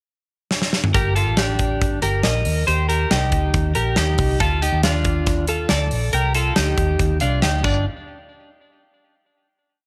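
A drum fill at 0.5 s opens this short, complete piece of jangly indie pop, serving as a pickup into the verse. From 0.9 s, an up-front twelve-string electric guitar rings out a bright, twangy, clean picked arpeggio figure doubled in thirds, compressed and trailed by tape echo. Beneath it, a dark, foam-muted fingered electric bass plays a round, melodic line with slides. An airy, polished big rock kit drives a brisk indie backbeat with a punchy kick, a medium-tuned snare, toms, hi-hat and bright crash cymbals. The verse cycles through a four-chord minor progression before landing on a power chord, and the mood stays restless and wistful. The drums stop at 7.7 s and the guitar and bass at 7.8 s, leaving a final hit to sound in light reverb and small room ambience.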